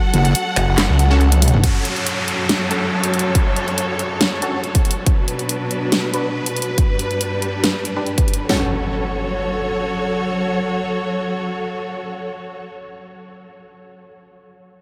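A growling, detuned sawtooth bass snarls up front in this heavy wobble dubstep excerpt, its distortion and overdrive biting through a brief burst from 0.6 seconds alongside a saturated, chorused square-wave wobble bass on a low F#. The mood is menacing at 140 BPM in a half-time 4/4 feel in F# phrygian, opening on a drop where the kick falls away before a drum fill. One electronic kit of finger snaps, handclaps, hi-hat, snare and toms is joined from 1.6 seconds by a second kit of kick and snare, both with huge, layered snares re-recorded in a small room. A rich, bowed studio string section holds sustained chords with expressive vibrato throughout, pumping with sidechain, moving from F# minor through B minor and G before returning to F# minor at 8.5 seconds. Bright, decaying orchestra-hit-like synth stabs with phaser and delay sit in the background, electronic downlifters and impacts appear along the way, and the whole mix is soaked in a vast, dreamy ambient reverb.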